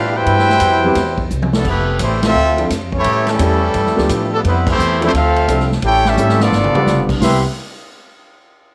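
Joyful and energetic, this brief big band swing passage at 172 BPM in C major puts a smooth-topped trumpet section up front on the melody with slapback echo, while a bright trombone section carries a second line in the background and another trombone section holds very quiet sustained chords until 1.6 seconds, a woody, thumpy pizzicato upright bass anchors the low end, a distant, roomy drum kit with a punchy kick enters at 0.3 seconds and adds fills, and a natural-sounding baby grand piano joins with accompaniment from 0.8 seconds, set in light small-room reverb.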